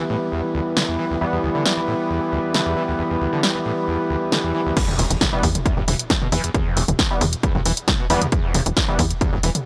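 A dry, gritty hardware recording of driving peak-time techno at 135 BPM in E phrygian, this industrial, relentless excerpt opens with a squelchy, screaming distorted acid riff and bright, detuned sync-sweep polysynth stabs over Em, both pumping with sidechain and tape echo, before a punchy analog drum machine with a tape-warm snare joins at 0.8 seconds and a drop at 4.8 seconds brings an overdriven, heavy electronic kick, a very quiet impact and a tight, nasal sawtooth sequencer bass.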